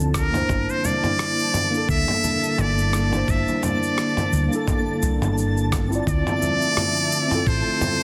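A buzzy, brilliant trumpet with a metal mute leads this relaxed, wistful sunset chillout excerpt up front, its jazz-style line scooped and touched with vibrato and a digital delay, over a mellow tine electric piano and an airy, breathy pad with chorus moving between Gm69 and Dm9. A round, punchy hollow-body electric bass joins a gritty, sampler-style soul drum kit of rim click, shaker and toms with soft clipping on the snare, a thumpy electronic kick and ringing congas in the background, all carrying a gentle swing. From 1.8 seconds a faint, twinkling granular texture with its own reverb adds an octave-up shimmer, within a light reverb and a dense, heavily limited master.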